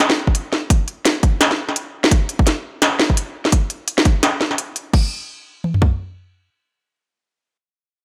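Half-time drum and bass at 170 BPM with a swung sixteenth-note feel and a spacious, cinematic mood, this excerpt sets an electronic industrial kit of clanging snare, crisp hi-hats and crash cymbal against a trap kit of hard-clipped, overdriven kick and toms, both up front in a light reverb, with the industrial kit dropping out at 5.0 seconds and the trap kit carrying on until 5.9 seconds after the music moves into a new section at 4.9 seconds.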